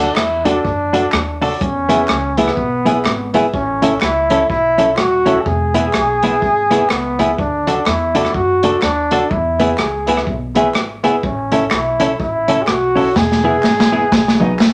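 A crunchy, saturated breakbeat kit with a gritty edge sits up front in a lively studio room, driving this joyful ska cut at 125 BPM with a swung eighth-note feel in E mixolydian, while a bright, punchy trombone carries the melody with light vibrato and a smooth top. A clean, compressed electric guitar plays picked accompaniment close to the front, a woody upright piano adds stabs in the background, and a thumpy pizzicato upright bass anchors the low end beneath crisp group handclaps. The chords cycle through D, E and A, and the drums close the passage with a fill from 13.2 seconds as the harmony turns to B at 14.1 seconds.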